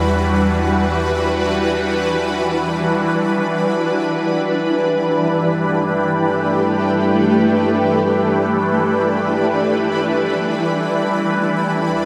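Weightless and peaceful, this free-time ambient excerpt in G major rests on a bright, up-front shimmering pad of sustained chords with octave-up granular shimmer, chorus and phaser, drifting from Em9 to G69 at 3.8 seconds and Em7 near the end, over a dark, ominous rumbling bass drone and an evolving pulse-width-modulated analog drone set in the background, while a very quiet, pure FM bell traces gentle arpeggios from 4.3 seconds, all bathed in a huge, wet reverb.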